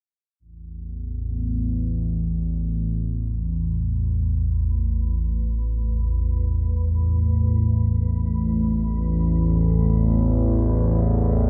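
Cavernous and desolate, this ambient fragment from a longer piece opens on an analog drone at 0.7 s, a detuned, wave-folded low tone with pulse-width modulation and chorus held up front. From 2.9 s a deep, moody pad fades in with sustained sub-octave chords over Asus2, carrying its own chorus and built-in reverb and sitting far quieter than the drone. A huge ambient reverb and a dark production give the whole space a heavy, enveloping depth.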